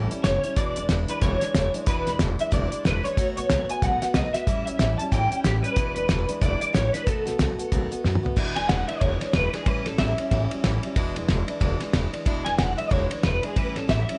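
A swung 185 BPM groove in 4/4 drives this rollicking, rowdy rockabilly cut in E mixolydian, where a twangy, slightly broken-up, lo-fi electric guitar through a small old amp, colored by ensemble chorus and tape echo, carries the melody over a full-bodied picked dreadnought acoustic, a thumpy, woody gut-string upright bass played pizzicato, and an up-front, cloth-damped drum kit with a fat snare, tight kick and dark cymbals, whose fill at 8.0 seconds launches a clean electric guitar solo from 8.4 seconds over dominant-seventh changes, all in a dry sound with a rolled-off top.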